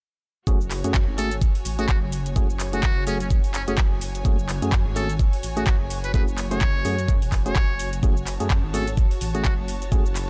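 A knocking, up-front electronic kick drives this swaggering, gritty bass house excerpt. Garage handclaps, shaker and metallic hi-hats swing around it, while a swirling, saturated detuned saw bass and hollow, dark organ stabs with chorus and digital delay pump against the kick. From 1.2 s a buzzy jazz-style trumpet with a metal mute carries the melody through a digital delay, above a smooth, clear symphonic string section that also pumps, all set in a digital ambience.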